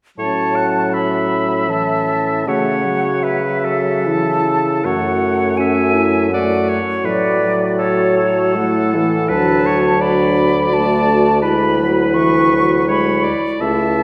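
An airy flute with vibrato sings the melody over a punchy oboe second line, a clear clarinet tucked in the background, a French horn with light vibrato in the accompaniment, and an up-front, mellow bassoon bass, in this tender, serene slow romantic movement for wind quintet in A major, flowing in a rubato 3/4 at 70-87 BPM and heard from further back in a wet concert hall, a passage cut from a longer piece.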